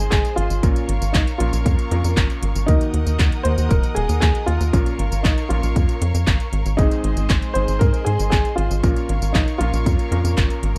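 Italo disco in Bb minor at 117 BPM, this short excerpt from a longer piece has a bittersweet, melodramatic mood over a straight 4/4 pulse. A tight sequencer bass sits up front and drives the track with a dark, sawtooth-and-square filter pluck that has a fast attack and a decaying tail, paired with a punchy, tape-warm electronic kick drum. A house drum kit adds handclaps, tambourine and metallic hi-hats, while a vintage electric grand piano with a clangy low end plays stabs through tape echo. Above them, a mellow, intimate grand piano carries the melody between Eb4 and C5, its short sustain and audible action noise passing through tape echo, as a symphonic string section holds bowed chords with light vibrato and a smooth top. The harmony moves through Ab, Bbm and Ebm, and the whole is framed as a dry, close 1970s-style studio recording with digital ambience.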